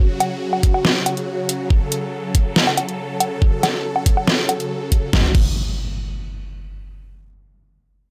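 Heavy wobble dubstep at 140 BPM in a half-time feel, this chaotic, heavy clip in F# minor, cut from a longer piece, opens on huge, lush, detuned supersaw chords that sustain under a phaser and pump against the sidechain. An up-front electronic kit joins almost at once, with a deep snare, metallic hi-hats, crash cymbal and woodblock, and a layered, knocking electronic kick arrives at 0.6 seconds, both carrying a small-room character. At 5.1 seconds an up-front electronic impact enters and rings out to the end, all set in light reverb.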